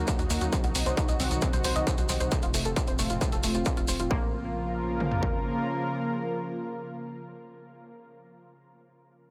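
A straight 4/4 pulse at 134 BPM drives this bittersweet slice of uplifting trance in Bb harmonic minor. It is built on a techno drum kit whose distorted electronic kick and toms sit up front, with an analog, tape-tinged hi-hat and grainy, saturated maracas adding texture on top. Underneath, a tight, punchy sequencer bass blending sawtooth and square waves carries a filter sweep through its opening stretch, its notes fast in attack and quickly decaying. A round, detuned analog pluck plays arpeggios with chorus and delay, its noise layer and evolving brightness riding over the groove, while a lush, thick unison pad holds sustained chords with a slow attack and long release. Pad, bass and pluck all breathe with sidechain pumping as the harmony moves from Ebm7 through Cdim and F to land on Bbm. The hi-hat and maracas stop around 4.1 seconds, followed shortly by the pluck, the kit and the bass, leaving the pad alone under a light reverb until 8.3 seconds.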